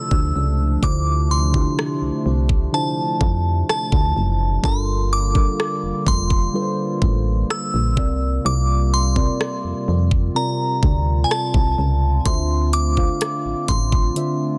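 Contemporary R&B in a longing, moody vein, this short cut from a longer piece moves through a slow straight pulse over a Dm7, Gm7, C7sus4 progression that returns to Dm7 at 12.3 seconds. A glassy, crystalline synth bell carries the melody high in its register, its bright FM tone given chorus and tape echo and a long release. Beneath it, muted felt-like synth keys supply dark, intimate accompaniment with chorus and a filter sweep, while a hollow, flute-like pad holds soft sustained chords with a slow attack. A punchy, round FM bass sits up front from 0.1 seconds, mellow yet solid, and an electronic trap kit of knocking kick, bright hi-hats and rim clicks shares that forward placement. Digital ambience surrounds the parts, and the dense, heavily limited modern master keeps the whole passage close and full.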